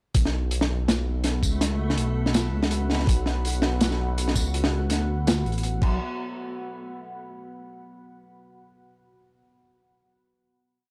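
A cinematic, heavy half-time drum and bass piece at 164 BPM opens straight into the drop at 0.1 s: a knocking, tape-warm electronic kick and a crunchy, gritty breakbeat kit with dark cymbals, snare, closed hi-hat and tambourine drive a sparse half-time beat beneath chopped phrases from a rumbling, detuned sawtooth bass with tube saturation. From 1.1 s a deep, moody ambient pad with chorus and sidechain pumping lays down slowly shifting chords, joined in the background by a reversed, dreamy granular texture holding a high note. The dry, gritty sound gives way to a final chord from 6.0 s, carried by the pad.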